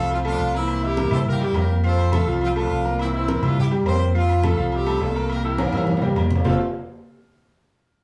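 A festive, danceable salsa excerpt in F major moves at a brisk 208 BPM in a straight 4/4, with a brilliant, close-miked horn section carrying the melody in loose octave doubling, a light vibrato colouring its pop-style phrasing. Beside it, a bright concert grand piano plays the accompaniment with a natural tone and a deep low end. Underneath, a sub bass with an added octave sits up front, its sine-like tone full, sustained and quick to speak. Congas with a thick, low-tuned skin sit in the background, while ringing metal agogo bells and timbales sound distant, as if placed in a larger space. The harmony swings back and forth between F and C7. A drum fill arrives at 5.6 seconds and leads into a new section at 6.4 seconds, all heard from further back in a small room with a wet studio reverb.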